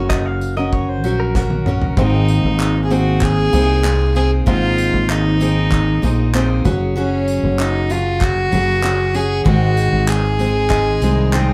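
Acoustic pop at 96 BPM in Ab mixolydian with a carefree, sunny mood, where up-front picked steel-string acoustic guitar and round, dark fretless bass run throughout over a loose indie drum kit with punchy kick, handclaps, tambourine and a fill from 1.4 to 2.0 seconds, a bright, twangy clean electric guitar briefly adds a second line, and a soft-attack, floating bowed violin carries the melody from 2.0 seconds across chords moving from Gb through Abadd9 and Gbsus2 to Ab, all heard from further back in a reverberant studio room.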